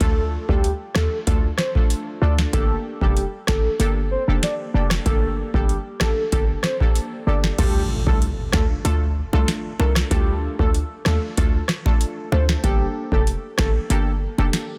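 A booming analog drum machine sits up front in this sultry, hypnotic dancehall excerpt, its deep kick, crisp snare, metallic hi-hats, rim clicks and crash cymbal carrying a tape-warm, electronic weight at 95 BPM in a straight 4/4. Beneath it, a short 808-style bass hits punchy and tight, a sine tone with a noise layer and a fast, decaying attack that also sits forward in the mix. A brassy, detuned sawtooth synth brass stab plucks chords through a filter with chorus, while a soft, octave-layered synth lead carries the melody in a round, dark triangle tone with a sine sub octave, vibrato, chorus, phaser and tape echo. The harmony in D minor moves between Dm and Gmadd9, and at 7.6 seconds a very quiet electronic impact marks the start of a new section, with tight, high-tuned acoustic bongos slipping in very quietly from 8.5 seconds. The sound is dry, dense and heavily limited in a modern master.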